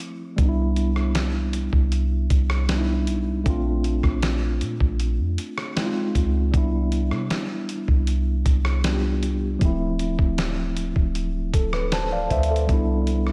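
Contemporary R&B with a romantic, smooth mood, where a mellow tine electric piano carries warm chords up front over a gritty, compressed sampler-style drum kit with a thumpy kick, fat snare, rim clicks and hi-hat that sounds re-recorded in a large room, while a deep, round 808-style bass enters at 0.4 seconds and the piano adds a brief fill near 11.5 seconds, all set in light reverb and digital ambience.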